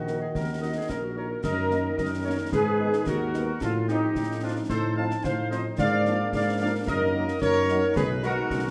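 This stern, martial wind-band march in Eb minor at 110 BPM, in a straight 2/4, opens with a clear euphonium in the background for its first 1.2 seconds, alongside hollow, crisp small flutes and a smooth woodwind section on second lines, sustained chords from mellow trombones, and a mellow tuba up front carrying the bass. From 0.1 seconds a dark, tight trumpet section takes the melody from a roomy distance, with very quiet French horns supporting underneath, while concert snare, bass drum and clash cymbals sound close and dry with bright cymbals. The harmony moves from Ebm through Abm and F7/A to Bb7/Ab, all set in a wet recital-hall reverb, and the piece is cut from a longer work.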